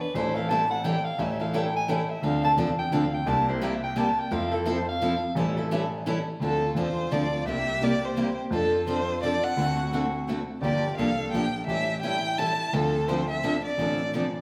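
A breathy soprano saxophone opens this excerpt of swinging, virtuosic jazz manouche in D minor, soloing with clear vibrato over a dark, worn grand piano bass line, its action noise audible, and an up-front picked parlour guitar, with a second picked guitar entering in the background at 2.2 seconds. The 171 BPM waltz in 3/4 swings its eighths as chords move from Am7 through Dm7, C7 and Fmaj7. At 6.4 seconds a close, expressive violin takes the melody with soft-attack bowing, vibrato and portamento, the whole band playing live in one room under a wet, large studio reverb.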